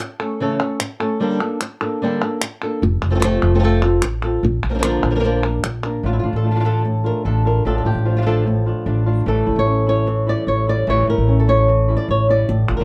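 A boxy, fingerpicked flamenco guitar melody with audible finger squeaks opens over crisp, close palmas claps in this fiery, mournful flamenco passage in A phrygian dominant at 149 BPM, with a woody, growly pizzicato upright bass arriving up front at 2.8 seconds and a softer, warm second guitar adding fingerpicked stabs from 6.0 seconds as the claps fall away, all under light reverb and a shadowy production.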